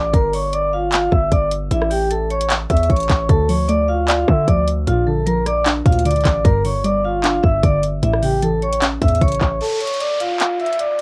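Dark, hard-hitting trap hip hop cut from a longer piece, in D harmonic minor at 152 BPM with a half-time feel, where an up-front vibraphone struck with medium hard mallets, motor off, rings a metallic, smooth melody through a low-pass filter and cassette tape over a punchy, heavy 808-style bass and an electronic trap kit of hard-clipped kick, metallic hi-hats, handclaps and rim clicks, joined at 3.3 seconds by a soft, round, warbling pluck with chorus, before the bass and pluck stop at 9.6 seconds for a break where a downlifter sweeps beneath the vibraphone and drums, all in a dry, vintage home cassette sound.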